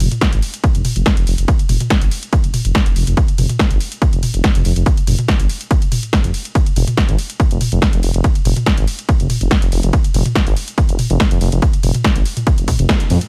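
Hypnotic and intense, this driving peak-time techno excerpt in F minor pushes along at 142 BPM in a straight 4/4, built on a heavy, overdriven electronic kick entering at 0.2 seconds, a punchy techno kit of hi-hat, ride, snare and toms with overdrive and small room ambience, and a deep, rumbling detuned saw bass spanning F1 to F2 with sidechain pumping, all kept dry and up front until a band accent at 12.9 seconds.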